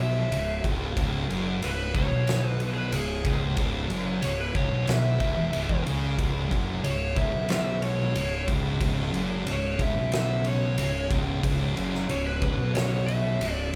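A fuzz-soaked lead guitar, run through wah and distortion, carries a melody between G#4 and E5 in this brooding stoner and doom metal excerpt, set in a hypnotic C# minor at 92 BPM in a straight 4/4. Beneath it from the start, two thick, dark fuzz guitars grind out a picked riff in the low register, one pushed through distortion and the other sitting very quiet in the mix, while a round, overdriven fingered bass adds weight an octave lower. At 0.3 seconds an oversized, low-tuned acoustic drum kit comes in up front, with a boomy kick, a fat snare and dark ride cymbal, its big, pumping room sound gritty and saturated. From 6.2 seconds a very quiet string machine adds sustained viola chords, vintage and warbling with a soft attack and mellow ensemble chorus. The whole band sounds as if playing live together in one room, wrapped in light reverb, with the single C#m chord holding the passage in a heavy, trance-like grip.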